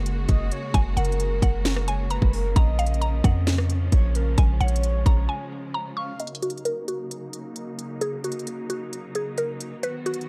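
Dark digital ambience frames this melancholic, menacing trap excerpt at 132 BPM in a half-time Eb minor feel, where a woody, round, mallet-like FM synth pluck carries the melody over lush, close bowed symphonic strings holding sustained chords, a deep, boomy 808-style bass that drops out at 5.3 s for a break, an up-front electronic trap kit with a hard-clipped kick, sharp snare, crisp hats and rim click, and a breathy, flute-like synth lead with chorus, delay and vibrato that stops at 6.2 s as a filter sweep shapes the closing Ebm7 passage.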